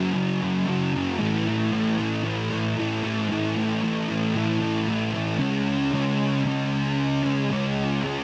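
Blissful and dreamy, this brief rock excerpt at 114 BPM in a straight 4/4 features a single thick, double-tracked fuzz guitar played alone and up front, its picked, distorted tone colored by analog chorus and light reverb as it moves from F#5 to A5 at 1.2 seconds and on to C#5 when a new section begins at 5.4 seconds, all within a dense, heavily limited modern master.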